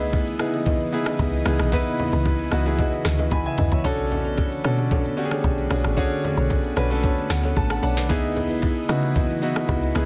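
A soulful, late-night amapiano groove at 113 BPM opens with a boxy grand piano, an ethereal chorused pad, delayed marimba stabs from soft mallets, a punchy woody log drum bass and an up-front electronic kit with a knocking kick and sharp, softly clipped snare, joined at 0.1 seconds by very quiet ringing bongos and congas, with a drum fill at 3.3 seconds and a piano fill at 7.0 seconds over C#m9 and Bm9 chords in a dense, heavily limited mix.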